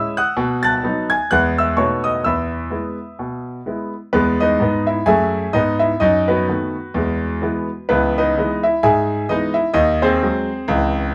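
A clear grand piano plays alone up front, its smooth, vintage tone and short sustain giving this stride jazz excerpt an exuberant, playful character. It swings in 4/4, covering a broad span from C#2 up to A6. The opening passage moves between B7 and E chords, and at 4.1 seconds a second section begins that travels through B7/F#, E and C#m7 before landing on G#7/D# at 9.8 seconds. The small room lends a moderate touch of reverb, and the rough home demo mix keeps the sound intimate and unpolished. The recording is cut from a longer piece and ends at 11.1 seconds.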